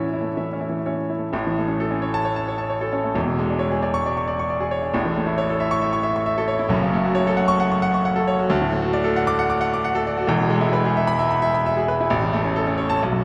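Rubato phrasing pulls against a 4/4 metre in this agitated, passionate fragment of a classical virtuoso piano study, where a solo grand piano ranges from deep bass up into its high register. The piano sits close and up front, clear and intimate with audible action noise and long sustain, while a wet cathedral reverb lets each phrase ring through a vast, echoing space. After a brief opening statement, a new section begins at 1.3 seconds and moves through E6, A, F#m, D and E chords before settling back on A at 12.1 seconds.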